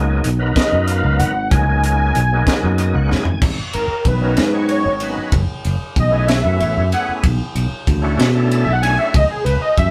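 In a straight 6/8 feel, this nocturnal, slick electric jazz fusion piece pairs a crisp, up-front drum kit, with its high-tuned snare and tight kick in a pumping room sound, with a warm fingered electric bass and a gritty, overdriven tonewheel organ turning through a slow rotary speaker; a bold, detuned sawtooth unison lead enters at 0.6 s, and after an organ fill and a drum fill it breaks into an analog synth solo from 3.4 s over minor eleventh chords, all with the feel of a band playing live in one room.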